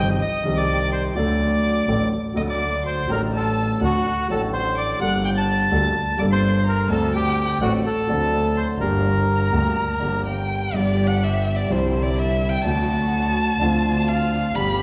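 A passionate, tense tango opens with a reedy, up-front bandoneon carrying the melody over an up-front baby grand piano, while a violin traces a second line above, its tone expressive with vibrato, portamento and a smooth top. A biting double bass, bowed by one player with light vibrato, sits distant and intense beneath the piano's smooth, vintage-toned accompaniment. The tempo is 126 BPM in 4/4, yet the feel is rubato, and the harmony moves through G harmonic minor with chords such as Cm, D, Gmadd9 and D7. The bandoneon falls away at 10.2 s, and at 10.7 s the music turns to G major as the violin steps forward for a solo over G, Cadd9, D and Dm7. A muted, con sordino string section enters in the background at that point with dark, veiled stabs. A recital hall reverb lends a churchlike resonance to this excerpt, which is cut from a longer piece and runs to 14.8 s.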